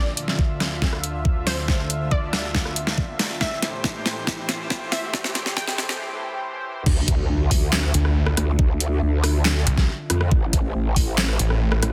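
An aggressive, menacing stretch of heavy wobble dubstep in half-time opens on a lush pad of detuned sawtooth chords with chorus and sidechain pumping, a punchy ring-modulated pluck melody trailing dub echo, and a very quiet riser, as an overdriven drum kit with a deep snare, handclaps, hi-hat, rim clicks and crash enters, soon joined by a knocking electronic kick, in a build-up under a filter sweep and drum fill. After a brief break, the drop lands at 6.9 seconds with a faint impact and a growling, wobbling bass shaped by a formant filter, joined at 7.9 seconds by a bright, snarling sawtooth bass with distortion and a moving notch, both sitting up front. The dense, heavily limited master carries light reverb and digital ambience.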